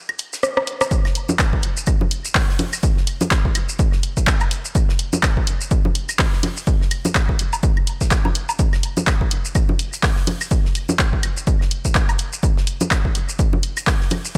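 A punchy analog kick drum, up front and carrying the sound of a large room, lands at 0.9 s after a brief break and drum fill, anchoring this clinical, hypnotic techno fragment at 125 BPM in 4/4 with a 58% swing on the 16ths. An up-front analog drum machine, also re-recorded in a large room, supplies handclaps, hi-hat, rim click and shaker, while layered, overdriven woodblock and congas ring out through tape echo. Beneath them, a very quiet, dry 70s drum kit adds hi-hat, shaker and a fat snare, the whole set within a small room ambience.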